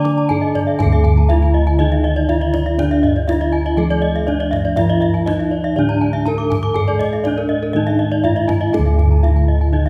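A straight, steady four-beat pulse drives this shimmering, ceremonial excerpt of Balinese gamelan, where an up-front, dark and smooth bronze metallophone carries the melody with paired-tuning beats. A boxy, wooden-mallet metallophone accompanies softly in the background, and two higher metallophones spin arpeggios, one shimmering and horn-struck, the other bright, dry and close-miked. Round, airy bossed gongs anchor the bass, and a deep kendang sits quietly behind, all ringing in a reverberant recital hall.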